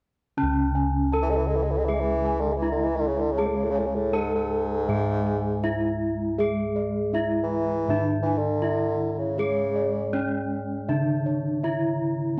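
At 0.4 s, a stately, hypnotic Javanese gamelan texture begins in a steady four, with bronze metallophones and bossed gongs entering together. Up front, a dark, ringing metallophone carries the melody, its paired tuning creating shimmering beats, while a second, airy metallophone played with padded disc mallets supplies a soft lower accompaniment. Above them, round bossed gongs struck with padded beaters trace high arpeggios, and a lower set of beating gongs anchors the bass. At 1.2 s a classical-style bassoon joins as a solo second line, mellow with light vibrato and placed close, before falling silent at 10.3 s. The melody metallophone, the arpeggiating gongs and the bassoon carry cassette tape colour and plate reverb, and the whole excerpt sits in a damp, short booth ambience as a homemade cassette recording.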